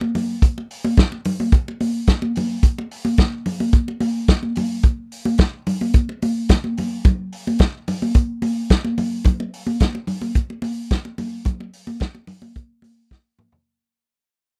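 A warm soul drum kit plays through this sultry, glamorous disco excerpt at 109 BPM in a straight 4/4, its tight kick, medium-tuned snare, hi-hat and toms sounding up front yet roomy, with a drum fill at 13.1 seconds. Bright, high-tuned congas with a thin-skinned, hard-handed attack add compressed, saturated percussion throughout. The dry recording fades out from 9.3 seconds as the section changes.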